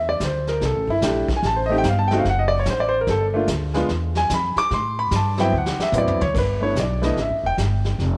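Cool and swinging, this brief fragment of a jazz piano trio moves with a swung lilt. The concert grand piano sits up front and carries the melody as an intimate solo, its natural tone rich with deep bass, audible action noise and a touch of tape echo, before it falls silent at 7.5 seconds. Beneath it, the pizzicato upright bass gives a woody, thumpy foundation with a close presence. A vintage brush kit joins at 0.2 seconds, sounding distant and roomy with dark cymbals, a medium-tuned snare and a punchy kick, and it plays a fill at 5.5 seconds. The harmony passes through colors like Am7b5, F#dim, G7sus2 and D13 before settling on G6, all framed by light reverb and a small-room ambience.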